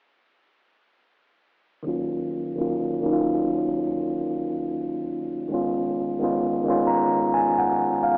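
A mellow, clean tine electric piano sits up front through a low-pass filter in this reflective, nostalgic hip hop excerpt at 66 BPM with a swung 16th feel, comping over Ebm7 and Db9 in Eb minor from 1.8 seconds, with a filter sweep across its part and a fill from 6.4 seconds, heard in a wet small room through worn, warbling cassette tape with drifting pitch and a telephone-like tone.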